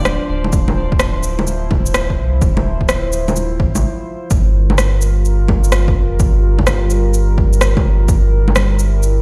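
Rainy and melancholic, this swung future garage fragment, cut from a longer piece, opens with a brief, crystalline wavetable pluck sitting in the background with chorus and dub echo, fading by 0.5 s, as a warbly, nostalgic tape-like pad sustains Dm7 and then Gm7 with chorus, built-in reverb and sidechain pumping. A deep, round sub bass with tube saturation sits up front alongside an overdriven electronic rim click, shaker and bongos, while a punchy, overdriven electronic kick drives from 0.5 s to 8.2 s, and a short break arrives around 3.8 s. The whole mix sounds as if played on a big sound system in a bare stone room.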